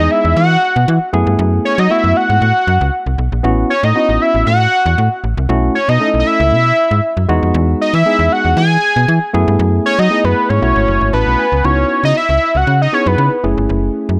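A light reverb gives this slick, danceable slice of early-eighties boogie funk a polished sheen, with the lead and bass sitting up front. At 117 BPM in a straight 4/4, a snappy, metallic FM bass with a fast, decaying attack drives the groove, while a worn, barky tine electric piano, slightly out of tune and heard through its built-in speakers, fills in the accompaniment. Over them a fat analog lead carries the melody, its detuned sawtooth and square-wave tone thickened by a sub octave, with an evolving filter sweep, vibrato, chorus and slapback echo. The harmony moves through lush chords such as Emaj7, F#m11 and B9sus4, and the electric piano slips in a short fill at 10.9 seconds before the passage shifts to a new section at 11.6 seconds on C#m11. The lead drops out at 13.4 seconds, leaving bass and electric piano to carry the F#m9 until the cut.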